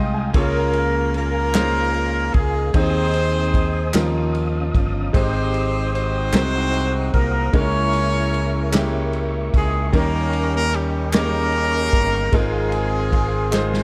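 In a slow 6/8 at 50 BPM in Ab major, this soulful, jubilant gospel excerpt opens with a brief bright grand piano fill before a tight, up-front horn section carries the melody in octaves with a light vibrato, over round, punchy fingered bass, a dark soul drum kit of kick, snare and ride, crisp handclaps entering at 1.5 seconds, and a mellow, flute-like tonewheel organ sustaining chords in the background through a slow rotary speaker, all in a small room that closes on a drum fill at 13.5 seconds.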